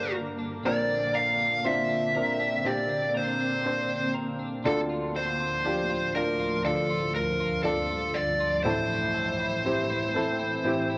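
Heartbroken and emotional, this slow pop ballad fragment in straight 4/4 sets a fuzz-drenched lead guitar up front on the melody, its distorted, compressed tone carrying the ache over a clear, woody upright piano with short sustain. Beneath them, a shimmering, ethereal pad holds sustained chords with an octave-up shimmer, chorus and its own reverb, while a bright, clean twelve-string electric guitar picks arpeggios. The whole piece sits in a wet spring reverb, moving from Gm through Bbadd9 and Dm to Am at 8.7 seconds.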